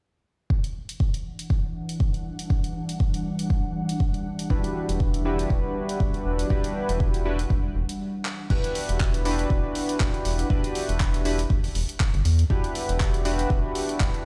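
Played back through a big sound system in a bare stone room, this moody deep house cut at 120 BPM in E minor sits on an up-front, tape-warm electronic kick and a layered drum kit of hi-hat, handclaps and crash cymbal, with a gentle swing on the sixteenths and an Em9 colour from the start. An ethereal, airy pad with slow attack, detuned unison, ensemble chorus and its own reverb breathes under sidechain pumping until 8.0 seconds. At 4.5 seconds a glossy, retro chorused polysynth arrives with tape echo and cassette grit, alongside a round, mellow analog bass thickened by tube saturation, both pumping against the kick, before a short break and a drum fill at 8.3 seconds lead into the second section.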